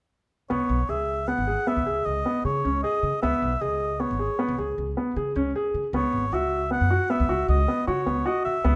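Close, detailed microphones and a light reverb place a small chamber trio up front in this short excerpt of a longer contemporary instrumental piece. Set in C# minor at 155 BPM in an uneven 7/4 with a straight feel, the music comes across as restless yet hypnotic. An oboe carries the melody in a classical solo style, its close-miked tone colored by a light vibrato within a narrow upper range. A grand piano spins arpeggios in the middle register, while an upright bass, plucked pizzicato on steel strings, adds a woody, acoustic foundation. All three play together from 0.5 seconds to the end, as the harmony moves from C#m7 to Bsus2 at 5.9 seconds.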